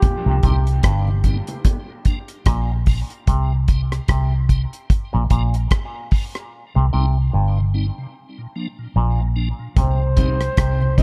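Heavy and meditative, this dark dub reggae excerpt rides a dry, tight-kicked drum kit and a round, foam-muted electric bass up front, with a piping, slow-rotary tonewheel organ and a nasal auto-wah clav riff arriving at 0.3 seconds, low-tuned congas sitting in the background, a breathy flugelhorn melody returning at 9.8 seconds, and a clean semi-hollow guitar slipping in at 10.2 seconds, as dub echo trails the horn, congas, organ, clav and guitar.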